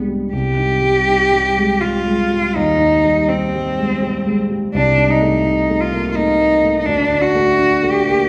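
A warm grand piano opens this romantic classical duo in C minor, with a single bowed cello entering at 0.3 seconds to carry the melody. The mood is yearning and solemn, moving at 83 BPM in 3/4 with a rubato feel that lets the phrases breathe. The cello's tone is rich and focused, with vibrato and a smooth top, and it sits above the piano's accompaniment in the mid register. Beneath it, the piano moves from C minor through Cm/Eb and Adim/C to a D chord as this short cut from a longer piece ends at 8.3 seconds. Both instruments sound up front, yet a wet recital hall reverb places the listener further back in the room.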